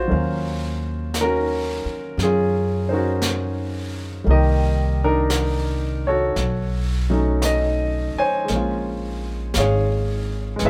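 A smooth, vintage grand piano and a woody pizzicato upright bass sit up front from the first moment of this melancholic, wistful jazz ballad excerpt in Bb minor, swinging gently at 57 BPM through Ebm9, Cm9, B9 and Bbm9 chords, while a brushed kit with a high-tuned snare and hi-hat joins softly in the background at 0.1 seconds, all caught with light reverb as a band playing live in one room.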